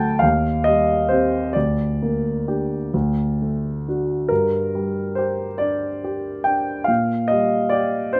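Close and moderately reverberant, this brief fragment of a romantic classical nocturne features a solo concert grand piano with a deep bass and an up-front presence, spanning D2 to A5 in a mournful, yearning G minor at a slow, rubato 43-48 BPM in 12/8, moving through Cm/Eb, Gm/D and D before settling on Gm and then Gm/Bb at 6.9 seconds.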